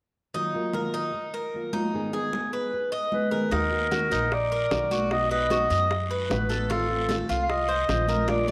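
A soft-attack, roomy clarinet carries the solo melody up front from 3.1 s in this nostalgic Cuban son and guajira cut, moving at a brisk 151 BPM in Eb harmonic minor. From the start, a bright, metallic tres picks arpeggios on its double strings over a dark, full-bodied fingerpicked nylon-string guitar, while thin-skinned, high-tuned congas sit distant in the background. At 3.5 s a woody, thumpy pizzicato upright bass, tight dry bongos and a raspy guiro join, with the whole mix set in a moderate echo-chamber reverb and a drum fill at 8.3 s.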